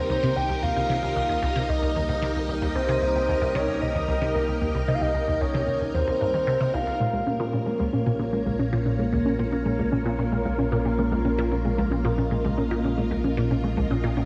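A squelchy, resonant blip pluck drives this mysterious, expansive piece of sequencer-driven space music with a low riff, treated with phaser, analog chorus, cassette tape grit and tape echo, while a lush, up-front string machine holds sustained chords and a deep, round analog bass fades in beneath them. A soft, octave-layered synth lead sings a dark, vibrato-tinged melody with 12-bit sampler grit and tape echo until 7.5 seconds, and a gentle, warbling pluck takes up arpeggios from 7.0 seconds as the harmony moves from Cm7 to Bbm7. The production is dark and warm, set in a wet concert-hall reverb, and the clip is cut from a longer piece.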